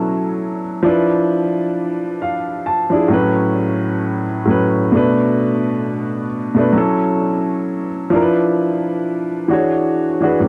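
Nostalgic and dreamy, this brief hip hop excerpt at 66 BPM with a swung sixteenth-note feel features a solo upright piano, woody and intimate with audible action noise and long sustain, sitting up front through cassette tape coloring, a low-pass filter and analog delay in a moderate studio reverb, adding a fill from 1.8 to 3.1 seconds as it moves through chords such as F#m7, Dm6/F, A69, Bm7 and E13.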